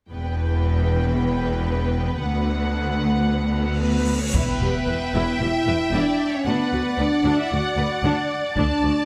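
A full string body opens the cue together: two violin sections carry a melody and a second line above a warm viola accompaniment, while rich cello and double bass sections hold the low end, all bowed with smooth, lush vibrato. This is a relentless, dramatic epic orchestral film score in E minor at 114 BPM in a straight 4/4, its harmony moving between Em and Bm/D. A huge, dark cymbal swell rises from 3.6 seconds into an impact at 4.3 seconds, where the second section begins and a taiko ensemble strikes with heavy sticks, close and dry against the strings. A mellow French horn section enters at 3.8 seconds with sustained chords, its smooth top sitting prominently in the mix. The scoring-stage reverb lends a moderate sense of space, and the cut-off fragment closes with a brief return of the taiko from 8.6 seconds.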